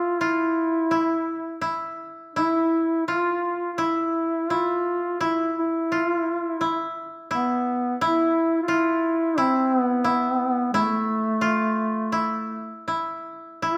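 A dark, distant duduk and a bright koto sound together from the start in this solitary, austere passage of Japanese chamber music, cut from a longer piece and moving with a free, rubato feel. The duduk carries the melody in a folk style, its vibrato and scooped notes sitting roomy yet up front, while the dry, woody koto, played with fingerpicks, holds a second line. A moderate recital hall reverb surrounds the pair through to the end at 13.8 seconds.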